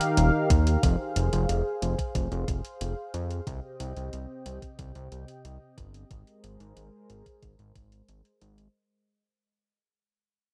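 A steady, straight 4/4 pulse drives this short synthwave cut, with a sampler-style electronic hi-hat ticking from the very start and a thumpy, overdriven electronic kick drum joining at 0.5 seconds and dropping out at 7.9. The mood is nostalgic and uplifting, carried by a lush unison pad of detuned sawtooth and square waves that sits up front with a slow attack, long release and bright chorus shimmer, while sidechain pumping makes it breathe against the beat. Underneath, a fat analog bass enters at 0.2 seconds, its thick, sawtooth-based tone sustained and detuned with a fast attack and a filter sweep of its own. The harmony moves from Ebadd9 through Fm and Cm to Abadd9, and a filter sweep on the pad runs the full length of the passage. Light digital reverb adds ambience, and the whole clip fades out as it goes, sounding like a fragment lifted from a longer piece.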